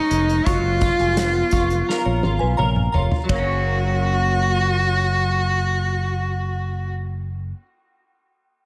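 A straight, unhurried 4/4 groove from an acoustic drum kit played with bundle sticks, with a punchy kick and a medium-tuned snare, carries this sunny, hazy indie and bedroom pop fragment, rolling into a fill before the kit drops out at 3.5 seconds. A rich, focused bowed cello with vibrato sings the melody up front, touched with subtle chorus and slapback echo, over a clean picked electric guitar with analog chorus and a warbly pitch drift and a warm, direct fingered electric bass. Behind them, a glassy, crystalline FM synth bell with phaser and chorus adds a decaying second line, all in a small room ambience as a rootless D#m11 gives way to F# at 3.3 seconds.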